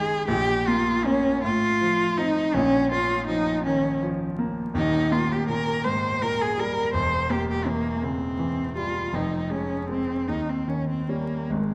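Romantic classical music for cello and grand piano, this brief excerpt is tender and serene, moving in a rubato 6/8 at roughly 47-56 BPM counted in dotted quarters. A single bowed cello carries the melody from start to finish, its tone rich and focused with vibrato, sitting up front between Ab3 and C5. The grand piano accompanies throughout in a lower register reaching from Eb1 to Eb4, its sound clear, smooth and vintage with short sustain, also placed close. The harmony begins on Bb minor at 0.3 seconds, touches F7 over A and Eb major, and closes toward F minor and Eb7 near 10.3 seconds. A wet recital hall reverb surrounds the duo, and the dark production carries a vinyl crackle.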